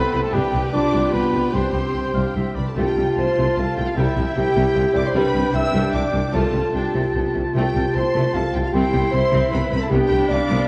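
Soaring and heroic, this cinematic orchestral passage in C major moves at 152 BPM in a straight 3/4, cut from a longer piece. A symphonic violin section carries the melody in the background with a warm, expressive tone and a soft attack. Around it, a bowed studio violin section sounds focused and distant, the flute is airy with a crisp attack, and the clarinet adds a dark second line, joined by a clear solo oboe from 1.9 seconds. The intense viola section accompanies while a mellow, roomy French horn section holds sustained chords over ringing, fingerpicked harp arpeggios, and a trumpet punctuates with clear stabs until 2.4 seconds. Below, a close cello section and an even double bass section anchor the bass, with a soft-attack tuba joining at 2.8 seconds, as the harmony circles between G/C, Csus2, Fadd9/C and C. The whole mix sits in a wet scoring-stage reverb and carries the worn, warbling pitch drift of old cassette tape.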